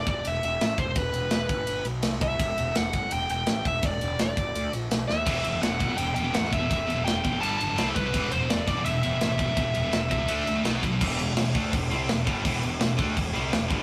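The recording has a rough rehearsal-room sound, with warm saturation and a moderate small-room reverb. This dark, epic heavy metal passage, cut from a longer piece, drives at 167 BPM in a straight 4/4 in E minor. A dark, distorted high-gain lead guitar carries the melody up front through most of the passage. Beneath it sit a growly, overdriven fuzz bass and a tight acoustic drum kit of kick, medium-tuned snare, ride and crash cymbals. A drum fill at 5.1 s brings in two scooped, picked riff guitars at 5.3 s, one bright and up front, the other very quiet and dropping out at 11.0 s. From there a new section begins on E minor, after the harmony has moved through G, C, A# and power chords.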